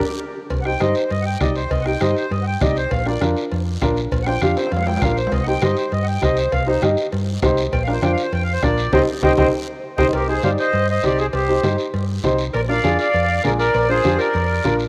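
A drum fill and a band accent open this excerpt from a longer cumbia piece, a passionate, driving track in C minor at 199 BPM with a straight 4/4 feel. From 0.5 seconds an up-front, reedy accordion with slow beating takes a solo over Cm and Bb chords, joined by a woody upright piano with short sustain and a dark, round hollow-body short-scale electric bass. Underneath sit a soft-beater bombo in the background, very quiet low-tuned congas with thin damped skins, a ringing metal cowbell and timbales, and a raspy, close guiro. Drum fills near 5 seconds and again before the change at 10.1 seconds lead into a second section, where the bombo drops out and a bright, punchy clarinet with light vibrato enters in the background with a forceful, vintage jazz-style line. The whole band sits in a lush hall reverb, with the character of a home cassette recording.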